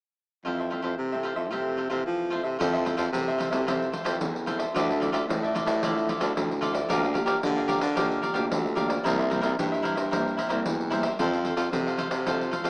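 Crisp, picked cavaquinho and a breathy, close-miked baritone saxophone with jazz-style vibrato carrying the bass up front open this playful, sunny samba-and-choro fragment, joined by a classical, fingerpicked nylon-string guitar in the background and, at 2.6 s, a jingly, distant pandeiro played with soft hands, as the chords move from Fmaj7 through Dmadd9, Gm7/D and C7 to F in a rough home-demo mix with light reverb, small-room ambience and a small-speaker sound.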